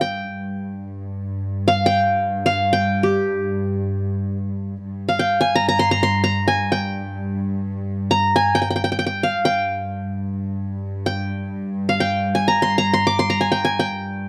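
In free time and G makam kurdi, this hypnotic, soulful Turkish makam ensemble excerpt sets a bright, fingerpicked qanun melody, its triple strings ringing up front between G4 and D6, over a soft-attack, floating cello section holding a sul tasto drone on G2 throughout its 14.3 seconds, all captured in a dry, close 1970s-style studio sound with light reverb.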